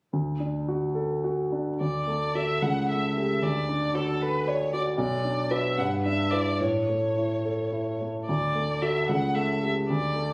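A smooth violin with vibrato carries the melody from 1.8 seconds in this lively, spirited excerpt from a quick classical-period piano quartet movement in D major, set in a rubato 6/8 at 68-78 BPM (dotted quarters). A natural-sounding concert grand piano with deep bass opens alone at 0.1 seconds and then accompanies the bowed line through harmonies moving from D to A7/C#, Bm, Em7/G and A. Captured on a phone in a recital hall, the performance has moderate room reverb with added studio reverb and compression, giving the pair a warm, up-front presence.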